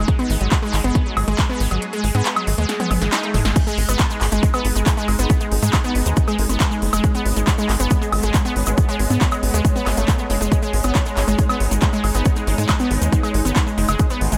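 A straight 4/4 pulse drives this psychedelic trance excerpt at 138 BPM in G# minor, its heavy, tape-warm electronic kick sitting up front beside a punchy snare, crisp hats, handclaps, toms, woodblock and crash from a big-room dance kit. The kick drops out at 1.8 s, a drum fill rolls through from 2.7 s, and the kick returns at 3.6 s as a grainy, close and dry egg shaker joins in the background. Underneath, a tight sequencer bass churns out a driving, wave-folded line with a fast filter pluck, while a lush, detuned unison pluck riff rings out bright with ring modulation, sidechain pumping and dub echo. Behind them an evolving wavetable pad morphs through sustained chords with ensemble chorus, tremolo and pumping, and a cloudy, blurred granular pad drifts high above in reverb as the ambient pad fades in. A nasal, resonant vowel-sweep wobble bass surfaces only in very quiet, dark bursts, and a faint riser appears at 14.2 s, all set in a light reverb that keeps the psychedelic mood driving and immersive.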